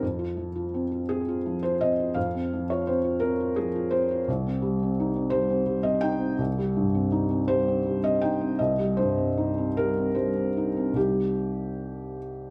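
An F5 chord on a felt-muted upright piano opens this intimate, reflective neoclassical minimalist excerpt, a solo played rubato in 6/8 at roughly 48-58 BPM in dotted quarters, its mellow, up-front tone reaching from C2 to G5 with a slapback echo in a short, damp booth ambience as the harmony shifts to C minor at 4.3 seconds before the clip ends at 12.5 seconds.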